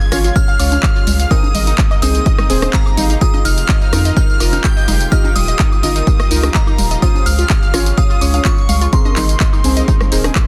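A straight 4/4 pulse at 126 BPM drives this emotional, propulsive progressive house excerpt, with a punchy, up-front electronic kick arriving at 0.4 s over a house kit of handclaps, hi-hat, rim click and tambourine, while congas and woodblock sit in the background, the hats and percussion pumping against the kick. A round, dark analog bass anchors the low end, and deep, mellow chord stabs with chorus and a filter sweep carry the harmony through Dbmaj7, Abadd9, Fm7 and Ebadd9. Behind them, a thick unison pad with chorus and vintage 12-bit sampler grit holds sustained chords, and a detuned unison pluck runs arpeggios through digital delay, both breathing with sidechain pumping. The lead melody comes from a glassy, crystalline FM synth bell with chorus and digital delay, joined in the same register by an expressive, bowed studio violin section playing a second line further back. A reversed, dreamy swelling texture with granular grain floats very quietly underneath, and the whole is dry, dense and heavily limited in a loud modern master.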